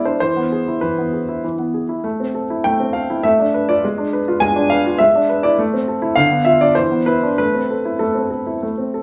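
In a rubato 3/4 at around 96-104 BPM, this short excerpt from a classical-period piano sonatina in A minor unfolds with a dramatic, serious air, a solo grand piano moving from E through diminished and seventh harmonies before settling on A minor at 7.4 seconds. The piano sounds clear, intimate and up front, its action noise audible, ranging from D3 to G#5. The recording has light studio reverb and the worn, warbling pitch drift of old cassette tape.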